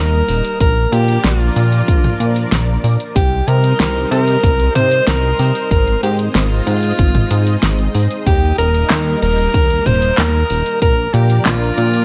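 A barely audible sub drop opens this excerpt of a moody, driving synthwave track, as a clear alto saxophone, a silky analog string pad and a glossy chorused synth bass all sound from the start. The pop drum kit arrives at 0.3 seconds with a fat snare, metallic hats, handclaps and toms, and a punchy, layered electronic kick follows at 0.6 seconds and drops out at 10.9 seconds. Up front, the saxophone carries the solo melody in a pop style, with vibrato and a digital delay. Beneath it, the pad holds sustained, detuned chords with a slow attack, ensemble chorus and a moving notch, and it pumps with the sidechain. The retro bass combines pulse-wave, sawtooth and sine tones with a filter pluck and fast attack, and it also pumps with the sidechain. The drums have a tape-tinged, produced sheen, and the whole mix sits in light reverb and digital ambience over a steady straight 4/4.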